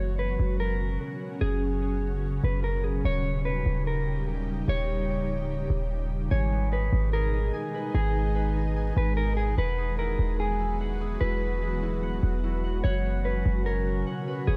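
An echo-heavy mix with light reverb and a faint mains hum frames this melancholic, ethereal hip hop excerpt at 147 BPM in G# minor, moving in a half-time feel. A dark, clean electric guitar carries the melody through a low-pass filter and analog delay, while an airy, detuned pad holds slow-blooming chords with ensemble chorus, and a deep, boomy sine 808-style bass sits up front beneath them. At 6.3 seconds a ringing, fingerpicked concert harp joins with filtered, delayed arpeggios as the chords move from G#m through Eadd9 to F#sus4.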